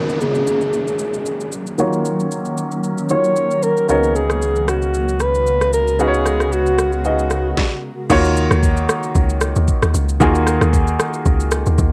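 Swung sixteenths at 114 BPM drive this late-night, hypnotic amapiano excerpt in Eb minor, where a vibrato-rich alto saxophone sings over a clear, worn grand piano, a cloudy granular pad, a downlifter and a knocking, tape-soaked R&B drum kit, a sine-and-triangle sub bass arrives at 3.9 s, and after a brief stop a deep, round log drum bass takes over the drop at 8.1 s, with a filter sweep across the opening section and a cassette tape coloring throughout.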